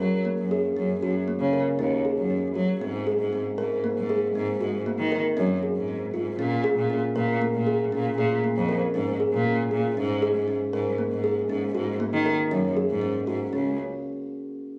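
In a straight 7/4 at 118 BPM, this restless, shimmering excerpt of contemporary chamber music pairs a woody, hollow-boxed kalimba ringing out soft fingertip-plucked arpeggios with one player's rich bowed cello bass full of expressive vibrato and portamento, both up front from 0.0 to 13.8 seconds over Gbadd9, Abadd9, Bbm7 and Ab9sus4 chords, all set in a moderate recital hall reverb with the compressed, club-reverb character of a phone recording made in the room.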